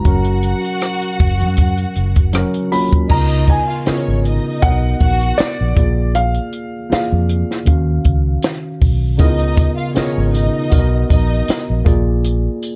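A dry, close-sounding mix with little reverb frames this brief cut from a lush 1970s-style soul piece, moving at 79 BPM in 4/4 with a light swing on the sixteenths and a cinematic, bittersweet mood. A dark, mellow grand piano carries the melody in a high register, its worn, intimate tone marked by audible action noise and short sustain, and it stops at 8.8 seconds. Beneath it, a slightly out-of-tune tine electric piano played clean through a combo amp supplies the chords, joined by a woody, vibrato-rich string section bowing a lush second line. The compact cocktail kit sits up front with a punchy kick, high-tuned snare, rim clicks, hi-hat and dark cymbals, alongside a round, foam-muted fingered bass. The harmony drifts through rich chords such as F#maj7, C#13 and D#m9, and a jingly tambourine slips into the background at 9.2 seconds.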